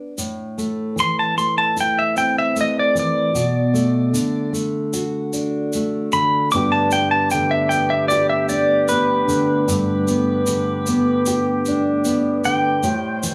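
A clean, up-front pedal steel guitar carries the wistful, haunting melody of this acoustic folk piece from 1.0 seconds, played with fingerpicks and slide and shaped by volume swells over moving Am, Bm7 and Gadd9 chords. Beneath it, a full-bodied jumbo steel-string acoustic guitar fingerpicks the accompaniment, while a grainy, bright tube shaker sits low in the mix. At 6.5 seconds a mellow, vintage brass ensemble enters with sustained chords and light vibrato, all held in a small room ambience with moderate reverb in a passage cut from a longer piece.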